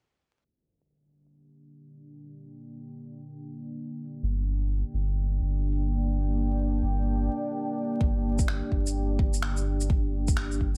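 Vinyl crackle under a low-pass filter colors this rainy, wistful future garage excerpt in G minor, set at 127 BPM in 4/4 with a swung sixteenth-note feel. A deep, moody ambient pad enters at 2.1 seconds with sustained chords built from detuned sawtooth unison and a sine sub octave; it has a slow attack, long release, chorus and its own reverb, pumps against a sidechain, and moves under a filter sweep. At 4.2 seconds a round, mellow sine sub bass arrives up front on a low G, holding steady and pumping in the same way. The beat drops at 8.0 seconds with a layered, deep electronic kick carrying small room ambience, joined shortly after by overdriven electronic shaker and finger snaps. Light reverb and digital ambience give the whole a hazy, nocturnal atmosphere.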